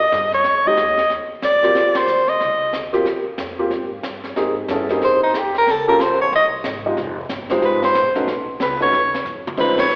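A brisk swing in four drives this cut from a longer small-group jazz performance, with a brushed drum kit of dark cymbals, high-tuned snare and boomy kick keeping time beside a woody, thumpy pizzicato upright bass. The mood is swinging and sophisticated, moving into a second section at 4.4 seconds as the harmony shifts to a new key centre. Up front, the clear soprano saxophone carries the melody with vibrato, stepping away at 2.7 seconds and returning at 5.0 seconds to play on to the end. A warm concert grand piano with deep bass and short sustain supplies the accompaniment, and slapback echo colours the saxophone, piano and drums. Band accents punctuate the line, a short drum fill arrives near the close, and the whole is heard as a live gig through the venue's PA, with recital hall reverb and a telephone-like sound.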